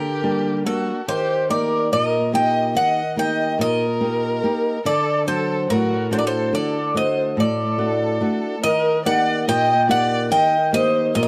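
Set in a straight 9/8 at 143 beats per minute counted in eighths, this short cut from a longer Greek folk piece moves with a wistful, dark mood, tuned to A4 = 444 Hz. An up-front Greek bouzouki carries the melody between A4 and G5, its picked double strings sounding bright and metallic, with some strings doubled at the octave. Behind it, a single bowed violin plays a smooth, even second line with rich vibrato, set distant in the mix. A fingerpicked flamenco guitar, also up front, supplies the accompaniment with the warm ring of fresh strings, moving from Gm to Eb and then to D before a second section opens on Eb at 8.6 seconds. The sound is that of a dry, close 1970s-style studio recording touched with light reverb.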